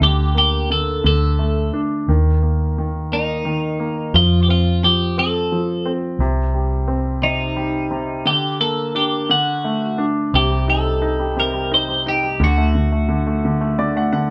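A bright, twangy twelve-string electric guitar carries the melody through a phaser over a clear baby grand piano and a round, foam-muted electric bass, all starting together in this melancholic, dramatic pop ballad in a straight six-eight. The band sounds as if playing live in one room, with moderate studio reverb and each part up front, while the harmony moves through minor and open colours before a closing passage. The piano adds a polished fill at 13.4 seconds just as this brief cut from a longer piece ends.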